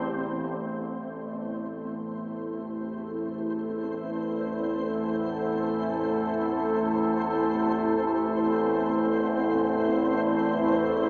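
A dark analog pad sits up front with deep, moody sustained chords in A minor, its detuned sawtooth tone thickened by a sub octave and chorus, while beneath it an overtone-sweeping drone resonates low with ring-modulated, moving overtones. A flickering, grainy granular texture hovers faintly in the background, and all three parts fade in together from 0.0 seconds in free time. Cut from a longer dark ambient piece, it feels cavernous, steeped in a cathedral-like reverb yet heard through a small-speaker sound.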